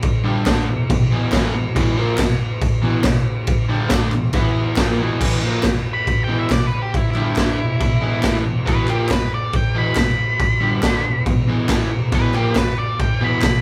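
A straight 4/4 pulse at 139 BPM drives this swaggering, rowdy garage rock excerpt, where a boomy, gritty drum kit with crash, kick and snare and a double-tracked, overdriven guitar riff on an E5 chord sit up front, crisp group handclaps sit dry in the background, and a dark octave-fuzz lead guitar enters at 5.9 seconds for a distorted solo, all captured live in one room with light reverb.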